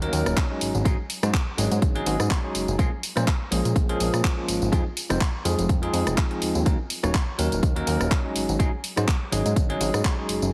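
A punchy electronic kick sits up front at 124 BPM in 4/4, entering at 0.4 s and dropping out at 10.2 s, while the 16ths carry a 55% swing that gives this filtered disco house excerpt a funky, sensual strut. Around it, a tape-tinged house kit of handclaps, hi-hat, rim click and tambourine breathes with sidechain pumping, its layered hits sounding re-recorded in a large room. A fat analog bass, thick and nasal with detuned sawtooth and square-wave tones, gives a fast-attack filter pluck that then sustains, pumping against the beat. On top, a barky tine electric piano rings bell-like and bright, clean and direct at the front of the mix, with phaser colouring its sidechained chords. The harmony moves through Ebm7, Ab7sus4, Bbm7 and Fm7 before circling back, all wrapped in light reverb and a heavily compressed, radio-like sound.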